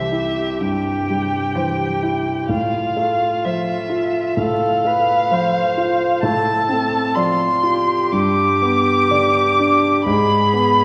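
A muted violin, viola and cello enter together with a warm grand piano, opening a slow, tender romantic movement for piano quartet in C major at 64 BPM, played with a flexible rubato feel. The violin carries the melody up front, its con sordino tone dark and veiled, with vibrato and a distant quality. Beneath it the viola supplies soft-attacked accompaniment with a smooth top, while the cello sits in the background on a quiet second line that stops at 9.8 seconds. The piano, natural in colour and placed up front, fills out the accompaniment across a broad range as the harmony moves from C through F/A and Dm7/A to G, ending on a rootless E/G# at 10.1 seconds. A generous church-like reverb and a vinyl crackle surround this short excerpt, cut from a longer piece.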